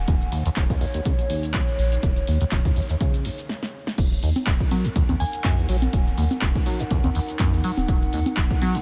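A squelchy, resonant sawtooth acid bass leads this hypnotic, driving acid house excerpt at 123 BPM in Eb minor, with a filter sweep running through the first half. It is saturated and phased, with analog chorus, cassette tape colour and delay. Beneath it, a deep, round sine sub bass pumps against the kick, while a warbling, nostalgic square-and-triangle pad with a slow attack and a long release drifts along, lo-fi and dark under its chorus and reverb. The drums swing lightly on the 16ths: a punchy electronic kick sits up front with the sound of a large room around it, and a dry analog drum machine adds a punchy snare, handclaps, hi-hat, cabasa, congas and crash cymbal. A drum fill and a brief stop at 3.5 seconds set up the drop at 4.0 seconds on an Ebm chord. At 5.2 seconds, a glassy, crystalline FM bell rings a single mellow Ab5 in the background, trailed by chorus and a diffuse ambient delay, all within a light reverb.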